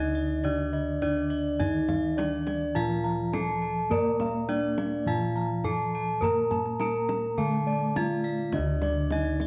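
A steady, straight four-beat pulse underpins this stately, shimmering Javanese gamelan excerpt in a pelog scale, with every part sounding together from the start to about 9.5 seconds. Up front, a bronze metallophone struck with a horn mallet carries the melody in a boxy, warm tone. Beneath it, a lower metallophone played with padded disc mallets gives mellow accompaniment, its paired tuning producing shimmering beats. Higher up, a bright metallophone and a set of soft, round bossed gongs trace arpeggios, the gongs touched by tape echo. A low set of bossed gongs adds a bright, beating bass, and a deep kendang keeps time from a live room. The whole ensemble sits in a small, wet echo-chamber space that gives the metallic tones a close, resonant glow.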